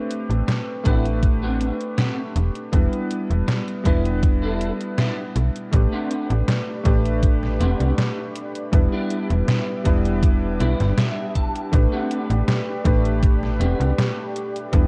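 Vaporwave at 80 BPM in A minor, this nostalgic, melancholic passage cut from a longer piece sets a clear electric grand piano with chorus and tape echo over a detuned 8-bit drum machine's fat snare and hi-hat, a thumpy electronic kick, and a snappy, metallic FM slap bass with tube saturation sitting up front. A bright, twangy clean electric guitar picks a riff through chorus and echo, taking a fill at 10.2 seconds, while the kick briefly drops out at 5.0 seconds and a silky string machine swells in softly behind at 6.1 seconds. The chords alternate between Am11 and Em7 under dark, cassette-tinged production with light reverb.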